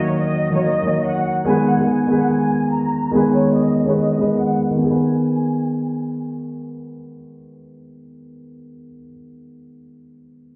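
Cold and dark in mood, this hip hop excerpt moves at 144 BPM in 4/4 with a half-time feel, set in G# minor and drifting from D#m to G#m. A lush bowed violin section carries the melody, its expressive vibrato sounding distant and softened by a low-pass filter, with a digital delay trailing its lines until it stops at 6.0 seconds. Beneath it, a grand piano supplies mellow, smooth accompaniment with a vintage character and long sustain, placed up front and also filtered, continuing alone until 10.6 seconds. A filter sweep runs through the opening, and the music shifts into a new section at 4.8 seconds. The whole mix sounds muffled, as if heard through a wall, with the echo of a stone room and a small-room reverb lending it a shadowy, enclosed atmosphere.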